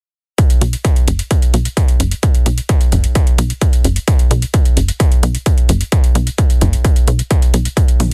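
A distorted electronic kick drum sits up front alongside a techno kit of metallic hi-hats and toms from 0.4 seconds, opening this hypnotic, driving slice of peak-time techno at 130 BPM in a straight 4/4. A tight sequencer bass joins at 0.6 seconds, punchy with a sawtooth and square-wave bite, ring-modulated edges and a fast-attack filter pluck, pumping via sidechain in the low register between F#1 and B1. The sound is dry and dense, with a heavily limited modern master and the kick and bass pressed forward.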